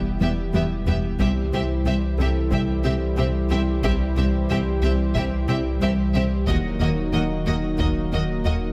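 A chorused analog pad with a slow attack, close-miked trombones and a punchy sine sub bass with a pitch-drop attack open this brooding, tense hybrid orchestral and electronic cue at 91 BPM, with a very quiet grand piano adding long-sustaining texture. At 0.2 seconds a very quiet taiko ensemble with heavy sticks plays a fill as the strings arrive: a lush, focused symphonic violin melody over an intimate sul tasto chamber violin line, expressive viola portamento and a smooth cello and woody double bass foundation. The harmony moves from Em to C and then darkens to Ebm at 6.5 seconds, all set in a moderate scoring-stage reverb in this short cut from a longer piece.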